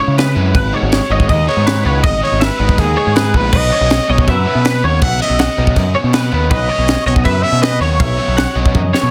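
Math rock and midwest emo at 161 BPM in a straight 4/4, this short cut from a longer piece feels bright and wistful. A twangy, chorus-thickened twelve-string electric guitar picks high arpeggios, while a double-tracked overdriven guitar plays a riff further back in the mix. Up front, a growling picked bass adds round, punchy drive, and a crisp fusion kit with a high-tuned snare, tight kick, crash and toms sits in an airy studio room. At 0.9 seconds a clear, close-miked solo trumpet takes the melody with light vibrato and a slapback echo, ringing above the C#m7, G#m and Bsus2 chords. Drum fills land at 3.3 and 8.7 seconds, and the whole sits in light reverb with a dense, heavily limited modern master.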